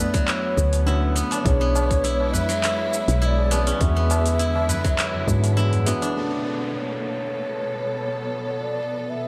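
A round, woody FM bass sits up front in this earthy, meditative organic downtempo excerpt, pumping under the sidechain alongside a tight, tape-toned electronic kick until both drop out by 5.9 seconds. Over them a breathy bamboo bass bansuri carries the melody with vibrato and delay, while a silvery fingerpicked steel-string zither arpeggiates, lush bowed strings hold sustained chords, and a felt-muted upright piano with audible action noise and 12-bit grit murmurs in the background. An afro-pop kit of cabasa, handclaps and metallic hi-hats is softened by low-pass filtering and gated reverb, a ringing low-tuned tabla hovers faintly behind, and an electronic downlifter arrives at 6.2 seconds in a bright, 1980s-style digital production with plate reverb.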